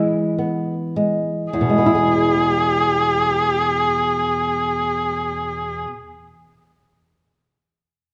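Lyrical and serene, this short fragment of a romantic duo for cello and classical guitar drifts in 6/8 at about 35 BPM (dotted quarters) in E major, with a rubato feel that slows over the opening 1.5 seconds. A small, dark fingerpicked nylon-string guitar sets up the accompaniment from the start, and at 1.5 seconds a single rich, bowed cello enters on the melody, singing expressively with vibrato and portamento. A moderate scoring-stage reverb gives the cello a distant glow within a warm production.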